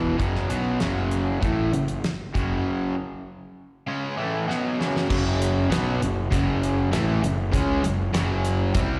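A crunchy, bright, double-tracked overdriven guitar riff with slapback echo and an up-front fuzz-driven fingered bass open this swaggering, brooding classic rock excerpt in a straight 4/4. At 0.2 seconds a damped, airy 70s acoustic drum kit joins with a fat snare, tight kick, hi-hat and crash. Everything is heard as a live gig through the venue's PA in a recital-hall space, with a break from 2.6 seconds capped by a drum fill at 4.5 seconds leading into a new section.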